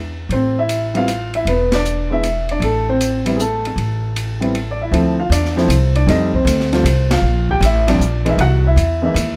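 This moody, late-night jazz piano trio excerpt sits in light reverb, with an open upright piano and a woody, pizzicato steel-string upright bass up front, and an acoustic drum kit with dark cymbals, a boomy kick and a medium-tuned snare sitting lower in a small room. At 156 BPM in a swung 3/4, the piano carries the melody over the bass line while the drums use hi-hat, kick, snare and ride. The trio hits accents together at 1.7 and 7.0 seconds, and at 4.9 seconds the harmony moves from A minor into D minor, where richer extended chords follow.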